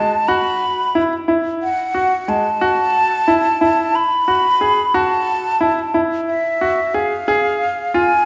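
A breathy, close-miked concert flute sings the melody with vibrato and tongued notes from the first moment, while a brilliant, polished grand piano sets out short-sustained arpeggios beneath it, both up front in this restless contemporary chamber piece. The music drives along in 7/8 at 180 BPM counted in eighths, tuned to A4 = 441 Hz, moving from Esus2 to Eadd11 at 2.6 seconds and arriving on F minor at 7.3 seconds. A wet concert hall reverb with a 2.0-second decay surrounds this urgent fragment, cut from a longer work.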